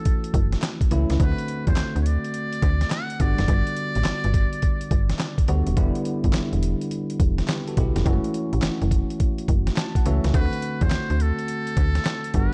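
A snappy slap-like FM bass with a metallic attack sits up front in this confident, punchy new jack swing R&B excerpt, alongside a gritty sampler-style soul drum kit of thumpy kick, fat snare, hi-hat and handclaps, a bell-like tine electric piano with subtle chorus that slips in a fill at 9.5 seconds, and a buzzy, breathy muted trumpet with digital delay carrying a jazz-style melody that drops out at 5.5 seconds and returns at 10.4 seconds, all over a dark, swung groove moving through F#m7, D7, Gmaj7 and Em7.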